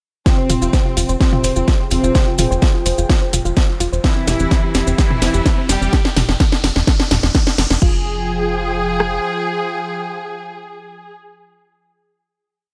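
A punchy, up-front house kick drives this hypnotic melodic techno piece at 127 BPM in F harmonic minor, with a galloping sixteenth-note sequencer bass, cracking snare, grainy maracas and a background riser building toward 7.8 seconds, while a smooth supersaw riff under a filter sweep, doubled by a woody, dark violin section, rides over an airy, evolving resonant pad and a soft round pluck looping a 3-step sequence, before the final Fmadd9 chord rings out to 11.1 seconds in a dry, close mix.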